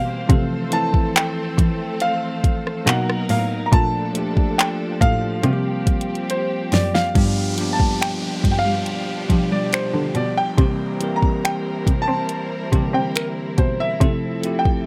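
Dry and close, this romantic, smooth contemporary R&B excerpt at 70 BPM sets a clear concert grand piano melody with delay over bell-like tine electric piano chords, lush bowed strings with sidechain pumping, and a veiled, muted cello bass with light vibrato and portamento. An up-front electronic drum kit with soft kick, fat snare, finger snaps and handclaps enters at 0.3 seconds and fills from 6.3 seconds, while the harmony moves from Fmaj7/C through G7 and C7, with a downlifter effect appearing at 7.2 seconds.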